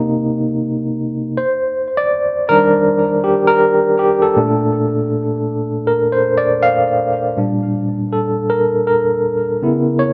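Swung sixteenths at a relaxed 80 BPM in 4/4 carry this warm R&B fragment in Bb major, cut from a longer piece and played entirely by a solo tine electric piano spanning Bb2 to F5. The piano sits up front, bright and barky, lightly overdriven through a combo amp with a fast tremolo and tape echo, moving through Cm7, Ebmaj7 and Bbmaj7 before shifting at 7.4 seconds to Bb6 and then Dbm7. A wet small-room reverb and a rough home-demo mix give it an intimate, unpolished feel.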